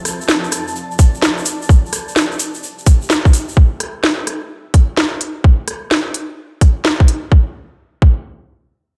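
A swung, skippy two-step groove from a garage drum kit with crisp hats, rim clicks and a cracking snare, paired with a grainy, bright egg shaker until 3.5 s and joined by a tight, up-front electronic kick from 1.0 s, drives this soulful UK garage excerpt, while a blurred, detuned granular cloud pad with its own reverb and sidechain pumping drifts over Dm7, Am7 and C7 before fading out by 3.6 s.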